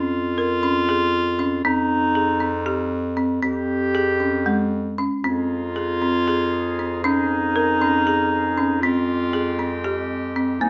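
Urgent and restless, this excerpt of contemporary chamber music in 7/8 at 235 BPM (eighths) sets a woody, rustic folk marimba playing arpeggios with medium hard mallets beneath a distant, roomy clarinet on the second line and a vintage-toned bass clarinet holding the bass, until a clear, tight woodwind section joins with sustained chords at 5.2 s, all under light reverb as the harmony moves from Bbm7/F through Fm7 to Abmaj7/F.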